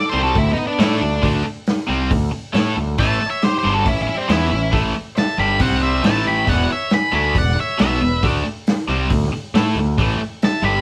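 The octave-fuzz lead guitar and a biting lead guitar open together, the fuzz line dark and up front carrying the melody while the brighter overdriven second line sits in the background beneath it. This is a raunchy, swaggering blues rock power trio cut with a southern rock streak, moving at 137 BPM in a straight 4/4 feel. A crunchy, double-tracked overdriven guitar riff and a growling picked bass with overdrive join almost at once, and a vintage drum kit of hi-hat, kick drum and snare enters at 0.4 s. The kit is acoustic and lo-fi, muffled with a rolled-off top, a tight kick and a medium-tuned snare, sitting up front alongside the riff guitar. The harmony moves through D5, A7, C5, A5, E5 and D5 before settling back on A5 around 10.0 s. The band plays live in one small room with moderate reverb, and the excerpt is cut from a longer piece.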